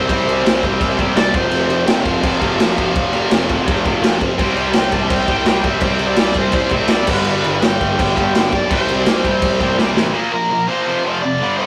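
A raw garage drum kit sits up front with a punchy kick, a saturated, gritty snare and crash cymbal in a pumping small room, driving this rebellious, upbeat punk rock excerpt at 167 BPM in a straight 4/4, then closing with a fill just before the kit stops at 10.1 seconds. An overdriven electric guitar picks the melody high above three distorted rhythm guitars riffing in the background, one of them scooped and double-tracked with high-gain bite, while a growly fuzz bass digs in beneath until the drums drop out. The chords move through C5, F5 and G before a brief closing passage on Bb5 and F5, all captured as a rough rehearsal-room recording with a short, moderate reverb.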